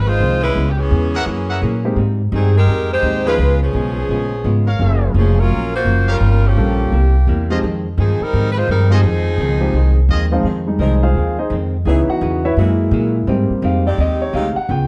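A dark, lightly reverberant production frames this sultry, swinging jazz excerpt, where a bright saxophone section carries the melody until 10.1 seconds over thumpy pizzicato upright bass, a clean hollow-body archtop guitar and a concert grand with deep bass, while a clear trumpet section adds stabs and, just as the piano takes a solo at 10.5 seconds, a soft-attacked second saxophone section holds sustained chords.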